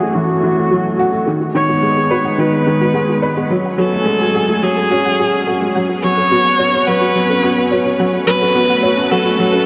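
A worn, woody upright piano riff and a focused, bowed viola melody with vibrato open this moving, intimate piano-and-strings electronica passage at 107 BPM, both sitting up front while a thick, warbling unison pad holds sustained chords in the background and a soft, very quiet pluck traces arpeggios. A deep, round analog bass is barely audible beneath, and the whole passage moves through A6, G#m, F#madd9 and Bsus2 as a build-up, with a filter sweep on the viola across its full 9.7 seconds. A huge, wet ambient reverb with a 6.5-second tail gives this fragment of a longer piece its spacious glow.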